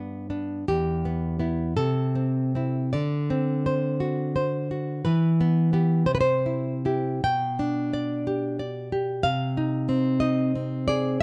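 Nostalgic and sunny, this romantic piece for solo classical guitar unfolds in a lilting 6/8 with a free, rubato feel, its harmony moving from G through Em, Am/C and D7 before settling toward C and G/B, then touching a surprising Ab/C near 9.3 seconds. The fingerpicked nylon-string guitar sounds dark and sits up front, ranging from low E2 up to G5, while a moderate stone-room reverb lends the live performance an airy glow. Cut from a longer piece, the passage has a soft, rounded top end.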